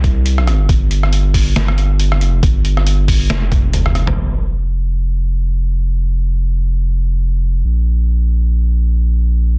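A dense, heavily limited and nearly dry mix opens this meditative, dark deep dubstep excerpt at 138 BPM in a swung half-time feel, where a thumpy, pitched-down electronic kick and a gritty, sampler-style trip hop kit of filtered hi-hat, rim click, medium-tuned snare and toms, re-recorded in a small room, drive the drop until a drum fill at 3.5 seconds, after which the thick, saturated sine sub bass, sitting up front from F1 to C2, carries on alone to 9.6 seconds.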